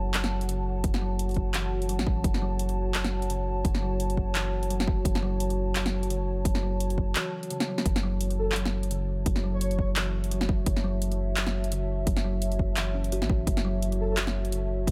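A half-time drum and bass groove with a light swing sets a dark, cinematic tone, its overdriven drum kit placing a cracking snare, bright hats and handclaps up front, while a hard-clipped electronic kick joins at 0.8 seconds. Beneath it, a deep, long 808-style bass with a sine character and fast attack sits under the single F# minor chord that runs throughout. A moody analog pad of detuned square, sawtooth and triangle waves, with a sub octave and ring modulation, sustains chords through chorus and pumps against the sidechain. A woody, ringing kalimba plays arpeggios through a low-pass filter and dub echo, its thumb-plucked tone warm and smooth. At 8.4 seconds a breathy, flute-like synth lead drifts in from the background, soft and sustained with vibrato, ensemble chorus and its own dub echo. Light digital reverb surrounds the mix in this short cut from a longer piece.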